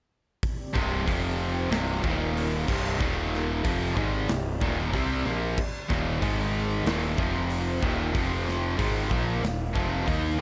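Hard rock in C minor at 93 BPM, heavy and driving, in which a dark, big-room acoustic drum kit with a punchy kick, crash, hi-hat and snare begins at 0.4 s, two bright, overdriven picked electric guitars enter at 0.7 s with a riff over C, Eb, F and Ab, a fuzzy, up-front electric bass joins at 0.8 s, and a very quiet, airy, breathy pad with chorus holds sustained chords beneath, all set in light reverb.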